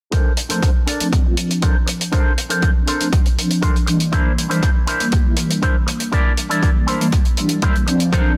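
A small room with light reverb surrounds a dense, heavily limited mix in this short excerpt of feel-good, groovy nu-disco at 120 BPM in 4/4, set in Bb lydian and moving from Bbmaj9 to C9 at 4.1 seconds. A punchy, overdriven electronic kick sits up front with a dry, dark hi-hat, while a clean, twangy electric guitar through an envelope filter plays a riff between D4 and D5, carrying analog chorus, tape echo and a filter sweep throughout. From 0.5 seconds, a mellow synth brass adds round, detuned sawtooth accompaniment with chorus, tape echo and sidechain pumping.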